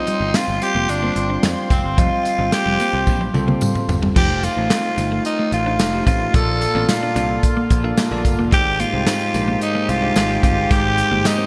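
A bright, glossy 1980s-style digital production, set in a lush hall reverb, frames this nostalgic pop fragment at 110 BPM in a straight 4/4. Up front, a raspy, breathy tenor saxophone growls out the melody with light vibrato, while a bell-like tine electric piano supplies clean accompaniment and a vintage brass ensemble holds sustained chords in the background. A very quiet hollow-body electric guitar plays a compressed, picked riff, and a growly, direct picked electric bass anchors the low end. The drum kit sits forward, dark and smooth, its punchy kick and medium-tuned snare carrying gated reverb, with a jingly tambourine tucked behind. A drum fill arrives at 3.1 seconds as the harmony moves from Fsus2 to F7, then Bbmaj7 and Abmaj7. Near the close, a clear horn section adds a brief stab at 10.7 seconds as the band hits an accent.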